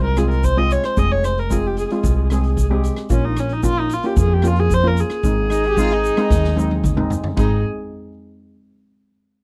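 A nasal, reedy bowed viola carries the melody up front from the very start over shimmering, metallic steel pan and a woody pizzicato upright bass, with a boomy, dark-cymbaled street-band drum kit and a grainy egg shaker in the background joining almost at once, in this festive, sunny calypso fragment cut from a longer piece, where a punchy, tight horn section adds a bright second line at 5.5 seconds and the drums play a fill at 6.3 seconds, in a dry, close 1970s-style studio recording.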